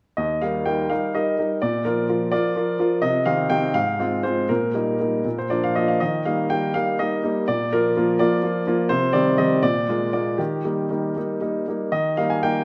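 Elegant and playful, this short classical-period sonatina fragment in Eb major unfolds in 6/8 at 77-85 BPM with free rubato, as a solo baby grand piano, clear, intimate and up front with its natural action noise audible, ranges from Eb2 to Ab5 through simple progressions that come to rest on Eb at 10.4 seconds, all bathed in the wet bloom of a recital hall.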